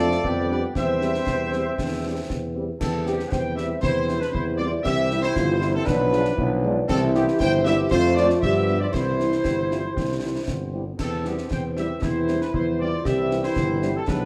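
A straight 2/4 pulse at 117 BPM drives this proud, spirited military-style march for wind band in C major: a punchy trumpet section with light vibrato carries the melody over an up-front, warm tuba bass, while a mellow euphonium, pure-toned flutes that drop out at 10.7 s and a tight background woodwind section add second lines, a very quiet French horn section supplies accompaniment, dark trombones hold sustained chords, and close, dry concert snare, bass drum and clash cymbals fill out the percussion, the whole band sitting in a roomy studio reverb with a dark production.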